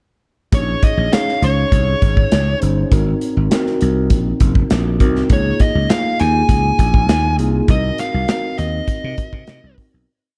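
A dark, warm small-room production frames this slick, nocturnal piece of polished 1980s jazz-funk pop, a short verse in Bb minor at 100 BPM that moves through Bbm11, Ab9, Db69 and Cm7b5 before fading out from 7.7 seconds. Up front, a studio drum kit lays down a crisp sixteenth-note groove with a punchy kick, medium-tuned snare, hi-hat and a pumping room sound, while a bright, growly slap bass plays an agile syncopated line with slides and chromatic approach notes. A clean, mellow tine electric piano with subtle chorus pushes rootless chords underneath a compressed, fuzz-distorted lead guitar that states motif-based call phrases.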